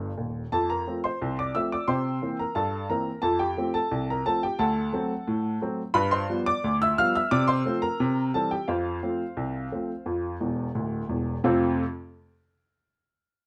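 Ragtime piano at 88 BPM in 2/4 with a straight feel, playful and lively in F major, cut from a longer piece. A lone upright piano, woody and slightly detuned, sits present and up front under close, detailed microphones with light reverb, opening with a short fill before moving through F, C7, D7 and G7 back to F, with another fill near 10.4 seconds. It spans a range from D1 to F6 and stops at 11.8 seconds.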